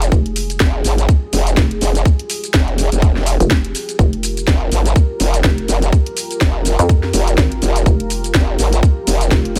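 A dry, close, loud mix opens this short cut from a longer bass house track in F minor, moving at 124 BPM in 4/4 with a swung sixteenth-note feel that makes it aggressive and bouncy. Up front, an overdriven electronic kick drum hits tight. A layered garage drum kit adds hi-hat, shaker and a cracking snare, also overdriven and set in a touch of studio reverb. The low end pairs a growling, wobbling bass, saturated and compressed with chorus and formant filtering, with a hollow, knocking FM bass that is punchy with a fast attack and a decaying tail. Both basses, along with a moody, detuned sawtooth pad holding an Fmadd9 chord behind them, pump against the sidechain. The pad sits low in the mix with a slow attack and a shimmer of chorus, while the basses and kick drive the track through the whole cut.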